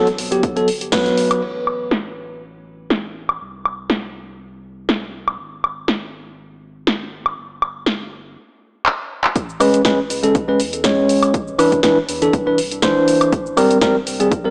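Heard through a small speaker from a home cassette with light digital reverb, this relaxed deep house excerpt opens on bright, bell-like tine electric piano stabs over Gmaj7 that pump against the beat and carry a cassette and analog delay color. Beneath them sits a deep, full sine-and-triangle sub bass with an octave, also pumping, in the background. An up-front, tape-warm analog drum machine plays punchy snare, handclaps, hi-hat, shaker, woodblock and crash, its snare, hats, percussion and cymbals softened by low-pass filtering. After the piano drops out at 1.4 seconds and a drum fill, the punchy electronic kick returns for a drop at 9.4 seconds, and the piano rejoins at 9.6 as the harmony moves through Amaj9, Cmaj9 and G#maj9.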